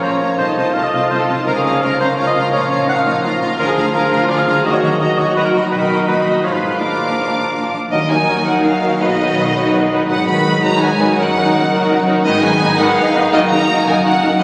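A stormy, urgent orchestral passage in 3/4 at 167 BPM opens with a focused violin melody over a second violin line, mellow cor anglais, a clear close-miked clarinet, bassoon, lush viola, distant cello with portamento, rich double basses and a ringing thumb-plucked harp, moving from Bb minor to Eb minor at 3.6 s before an airy flute section and very quiet, roomy French horn chords join at 7.9 s, all bathed in a wet church reverb and captured on a phone in the room.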